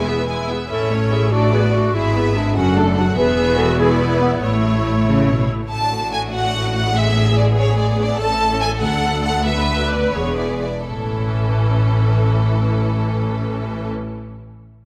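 A wet scoring-stage reverb surrounds this short cut from a quick, cheerful classical-period orchestral movement in A major, moving in a lively 6/8 at roughly 82-98 BPM counted in dotted quarters. A focused, close violin section carries the melody with vibrato over a background second-violin line and a rich, expressive viola accompaniment with touches of portamento, while cellos and a lush double bass section anchor the bass. A dark, soft-edged solo clarinet adds a second line until 5.5 s, and the tempo slows between 7.6 and 10.9 s before arriving on an A chord.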